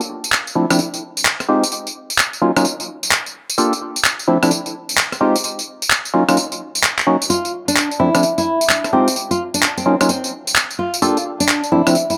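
UK garage in the two-step style, this soulful, late-night excerpt swings its sixteenths over a steady four-beat pulse. Electronic tambourine, handclaps and rim click form the drum part from the very start, sounding sampler-style, gritty and pitched up, compressed and tape-warm from being re-recorded in a small room. From 0.6 seconds a percussive organ stab carries the harmony, hollow and mellow with a fast attack that decays, its sine and triangle tones carrying a noise layer, thickened by analog chorus and trailed by digital delay as it moves through a cycle of minor ninth chords. At 7.3 seconds a fingerpicked nylon-string guitar enters with a short melody in a narrow middle range, full-bodied and deep in a classical manner, with audible finger squeak and a dub echo trailing its notes. All three parts sit up front, bathed in a moderate plate reverb that gives the mix a soft sense of space.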